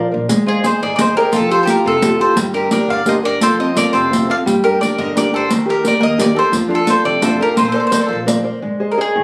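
Lively and romantic, this short cut from a longer Italian folk serenade sways in a lilting 6/8. A mandolin carries the melody up front, its picked double strings sounding woody, while a second mandolin adds a quieter supporting line from 0.5 seconds. A dark, fingerpicked nylon-string guitar sits close to the listener, small in body, with audible finger squeak. An upright bass, plucked pizzicato on steel strings, stays warm in the background, and a riq sprinkles bright jingles over the texture. The harmony moves through chords such as Ab, Fadd9, Gm, Eb and Bbadd9, and the ensemble sounds as if captured on a phone in a recital hall with moderate reverb.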